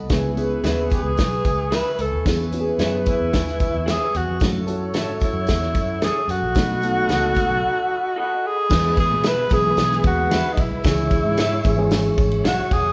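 A breathy tenor saxophone carries the melody up front from 0.9 seconds, its whispered, intimate tone marked by vibrato, scooped notes and a soft attack in this danceable, uplifting slice of 1960s-style soul. Underneath, a soul drum kit with a tight kick, dark cymbals and a rolled-off top drives a straight 4/4 groove, while a round, foam-muted picked electric bass holds down the low end. A clean, reedy electric piano plays accompaniment, and in the background a flute-like tonewheel organ with key click sustains chords through a slow rotary speaker. A distant, mellow horn section adds a punchy second line until 8.4 seconds, a slightly broken-up, lo-fi guitar drops in stabs, and a jingly tambourine sits far back in the room. The band sounds live together in a large studio with a wet reverb, and a short break at 7.6 seconds leads into a new section where the chords move from the C#m7, E6, F#m7, B7 progression onto E and then C#m.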